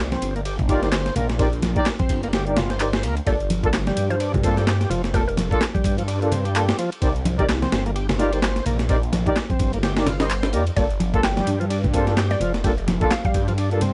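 Dry, gritty and dulled at the top, this funky, swaggering breakbeat excerpt in G minor runs at 128 BPM with a swung 4/4 feel, built on a thumpy, compressed sampler-style drum kit of kick, snare and ride, an overdriven analog drum machine adding handclaps and hi-hat, soft-handed congas in the background and a thick, swirling phased saw bass up front, while a shouting tonewheel organ riff with key click and slow rotary speaker rides over mellow brass stabs from 0.7 s, and a woody, warbling FM mallet pluck adds a melody at 3.3 s and 10.8 s, both times over Gm9, as the harmony alternates between Cm9 and Gm9.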